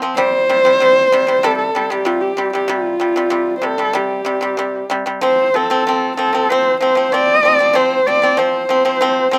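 A dark, husky horsehead fiddle carries the melody in this short passage of Mongolian folk music, bowed by a single player on horsehair strings and sitting close and up front. Its line is expressive, shaped by vibrato and portamento, and a slapback echo trails each phrase. Underneath, a fingerpicked acoustic pipa plays percussive arpeggios in a lower register, dry and also up front, with its own slapback echo. The pipa starts at 0.0 seconds and the fiddle joins at 0.2 seconds, and both continue to the cut at 9.4 seconds, over a straight, galloping pulse in four. Captured outdoors with only light reverb, the sound feels open and vast, like a ride across an endless plain.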